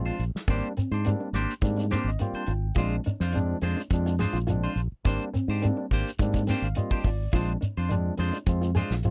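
A barky tine electric piano, a fingerpicked nylon-string guitar in the background and a round, up-front fingered electric bass open this driving, hypnotic afrobeat excerpt, joined almost at once by bright, picked clean electric guitar stabs through a phaser. A soul drum kit with a tight kick and rolled-off top enters at 0.2 seconds alongside a grainy, mellow shekere, while the electric piano adds fills around 1.6 and 6.2 seconds over chords alternating between Abmaj9#11 and Bb9. The sound is dry and close, in the manner of a 1970s studio.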